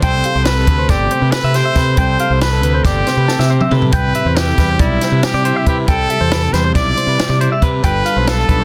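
A brilliant, up-front trumpet carries a wistful, pop-style melody with vibrato and digital delay over bright twelve-string electric guitar chords, twangy clean electric guitar arpeggios, a growly overdriven fuzz bass and a dry compact cocktail drum kit with a high-tuned, softly clipped snare, in this intricate math rock and midwest emo excerpt in 9/8 at 277 BPM (eighths), moving through Am9, Cmaj9 and G9 in A minor, with a drum fill from 3.3 to 3.9 seconds, set in light reverb and a dense, heavily limited modern master.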